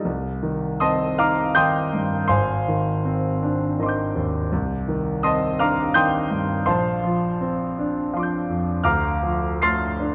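A dark production sets the sound, with the concert grand clear and up front, its deep bass and open tone carried by a moderate scoring-stage reverb. This wistful, hazy impressionist piece in C minor moves in 3/4 at around 82 BPM with an uneven, rubato pulse, the solo piano spanning a broad range from low Ab1 to high C7. Taken from a longer work, the 10.1-second passage drifts through colorful harmonies such as Abmaj7#11 and Bb69 before settling on Dm7.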